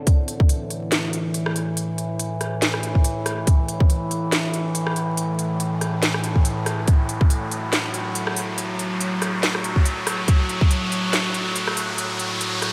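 This excerpt of deep dubstep opens at 0.1 seconds on an A5 chord, with a tight, up-front electronic kick and a garage drum kit driving a half-time 4/4 pulse at 141 BPM with a 56% swing on the sixteenths. Beneath them, an overtone-sweeping drone holds sustained chords between A2 and F#3, its nasal, resonant sawtooth-and-sine tone swelling in on a slow attack and fading over a long release through chorus and built-in reverb. The garage kit pairs a cracking, filtered snare and crisp hats with rim clicks, and its tape-tinged sound carries the air of a large room. From 2.3 seconds an electronic riser builds toward the end of the passage, sustaining the brooding, meditative tension of a build-up. The kick stops at 10.7 seconds, while the drone, kit and riser continue to 12.7 seconds, all set against light reverb and a bed of vinyl crackle.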